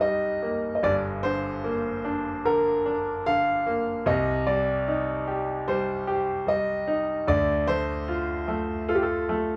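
This is a tender, heartfelt pop piece at a relaxed 74 BPM in a straight 4/4, a short passage cut from a longer work and tuned slightly below standard pitch. Two concert grand pianos carry it together throughout its 9.6 seconds, both sitting up front at an even level. The melody piano is warm and open with long sustain, its line moving between G4 and F5 and trailed by a delay. Beneath it, the accompanying piano is bright and polished with short sustain, reaching from a deep G1 up to G4. The chords move from Cm7 to Gm, then Cm and finally Dm7, heard in a wet studio reverb that gives the feel of players sharing one room.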